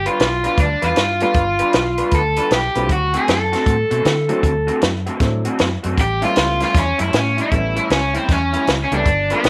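Recorded in a small-room ambience, this swaggering, rollicking electric blues shuffle at 156 BPM moves from G7 to D7 to A7 as an overdriven, lo-fi garage guitar carries the melody up front over a round, foam-muted fingered bass, a slightly broken-up electric guitar riff through a small old amp with analog chorus, a compact cocktail drum kit with a high-tuned snare and punchy kick, and a woody, boxy upright piano that enters at 1.2 seconds.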